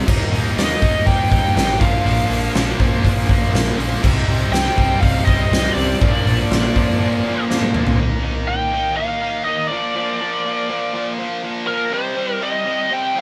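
Hard rock at 122 BPM, driving and menacing and cut from a longer piece, built on three picked overdriven rhythm guitars playing a riff over Eb, Bb and Cm (two bright, one of them with tremolo, and one warm and double-tracked in the background), a growling overdriven bass that drops out at 6.9 seconds, and a huge, up-front arena drum kit with a fat snare and punchy kick that closes with a fill ending at 8.0 seconds, after which a single rhythm guitar carries on beside a very quiet, gritty tonewheel organ on slow rotary speaker and a biting lead guitar melody that entered at 0.6 seconds, in a light live-room reverb.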